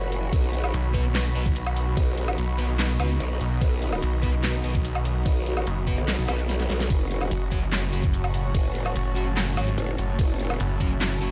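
A half-time 4/4 groove at 146 BPM drives this heavy, menacing wobble dubstep excerpt. A knocking electronic kick and a dubstep kit with a huge snare, metallic hi-hats, ride cymbal, handclaps and woodblock carry the beat, and the kick drops out at 6.1 seconds while a drum fill leads into the move from B to F#m at 6.9 seconds. Up front, a wobbling, chorused growl bass and a snarling, detuned sawtooth bass with distortion dominate the low end, while dark, double-tracked fuzz guitar stabs with tape echo, a smooth bowed string section pumping under a low-pass filter, and a cloudy, evolving granular pad sit in the background of a dry mix.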